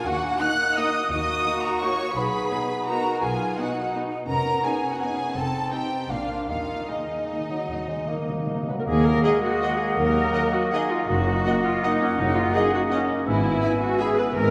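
A bittersweet, sweeping orchestral ballroom waltz in E-flat minor opens with a rich, focused violin section carrying the melody in 3/4 at a rubato 142-185 BPM, shadowed by an airy, hollow silver flute, a second background violin line, a warm clarinet and a very quiet, mellow French horn section holding chords over bowed cellos and a distant double bass section. A soft-attack bassoon and a prominent viola section fill in the accompaniment, while round timpani struck with soft mallets deliver a fill from 6.5 seconds. At 8.9 seconds the opening section returns with a clear solo oboe and a mellow tuba joining, all set in the long, wet reverb of a church or concert hall.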